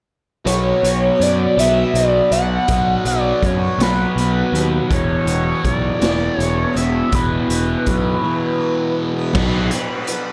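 A dark, mysterious psychedelic rock excerpt in B minor, moving slowly at 54 BPM in 6/8, opens at 0.5 s with a screaming sawtooth synth lead carrying the melody through distortion, phaser, vibrato and tape echo. Beneath it sit a bright, double-tracked fuzz guitar riff, a round, punchy overdriven bass and a saturated garage drum kit of crash, hi-hat, kick and snare in a pumping small room, while a shimmering, buzzing tanpura drone hums in the background as the chords move from B5 to E5. The lead stops at 9.0 s, and at 9.3 s a buzzy vintage combo organ and very quiet, low-tuned congas join on a Bm7, all within an echo-heavy mix with light reverb.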